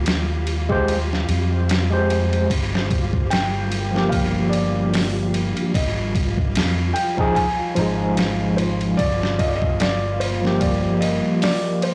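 A blown-out, overdriven recording in a small room opens this dark, hypnotic trip hop excerpt, where a gritty, pitched-down sampler drum kit with a thumpy kick sits up front over a growly, amped electric bass. A barky tine electric piano enters at 0.7 seconds with tremolo, tape echo and a filter sweep running throughout, while a flickering, granular texture hovers in the background. At 3.3 seconds a felt-muted upright piano with audible action noise carries the melody, joined shortly after by a deep, detuned pad with 12-bit grit beneath chords moving from Abmaj7 to Gm7 and Fm7/Ab.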